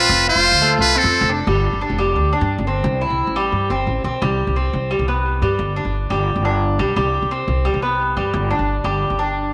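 Latin music in a relaxed, sunny mood, heard as a short excerpt cut from a longer piece. A trumpet with a metal mute opens with the melody, buzzy and thin with light vibrato, scooped notes and a forceful, jazz-style punch, while a bright trumpet plays a second line beneath it in a pop style, and both horns fall away at 1.3 seconds. From there the Cuban tres carries on with the upright bass, its picked double strings giving metallic arpeggios with some octave-doubled strings, up front and touched with tape echo, as does the muted trumpet. The pizzicato upright bass sounds woody and thumpy on gut strings, dark and close at the front of the mix. The harmony moves from F to G5 to C in the opening section, then rocks between C5 and G5 from 4.2 seconds until the close at 9.5 seconds. A wet spring reverb and small room ambience surround the parts.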